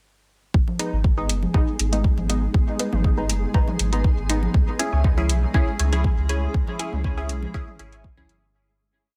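Dub techno at 120 BPM in G# minor, meditative and hypnotic, with a four-on-the-floor electronic kick sitting up front from 0.5 seconds alongside a round, soft sub bass in a dotted rhythm. Closed metallic hi-hats and a programmed backbeat carry the groove, while overdriven electronic congas and low toms echo through dub delay in the background. A muted, detuned sawtooth chord stab plucks a dotted pattern through chorus, phaser and dub echo, one shape moved in parallel from G#m to C#m. A cloudy granular pad holds evolving, blurred chords behind it, joined by a grainy, flickering high note, both breathing with sidechain pumping in their own reverb. From 4.9 seconds a brighter, sparse second stab adds echoing chords higher up through lush chorus, and the piece fades out from 5.9 seconds within a dense, heavily limited master and digital ambience.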